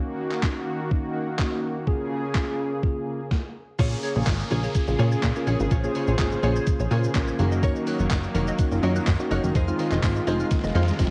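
This dance-pop excerpt has the lightly reverberant, hazy grain of a home cassette recording, with a confident yet bittersweet mood. A mellow tine electric piano and a smooth, detuned supersaw open together, both carrying sidechain pumping and tape colour, while a gated 80s digital drum machine sits up front with a thumpy kick, a gated-reverb snare, claps, hi-hat, shaker and crash. After a brief stop, the track fills out at 3.8 seconds: a punchy, funky analog bass with a plucky filter snap anchors the low end, a hollow, bouncy square pluck spins chorused, delayed arpeggios in the background, and a clean, direct-recorded guitar plays a compressed picked riff under a shimmer of analog chorus. A background downlifter sweeps through this passage, and a very quiet, jingly tambourine joins at 7.6 seconds. The harmony moves among Gb6, Bbm7 and Fm7, and a drum fill at 10.5 seconds closes the clip.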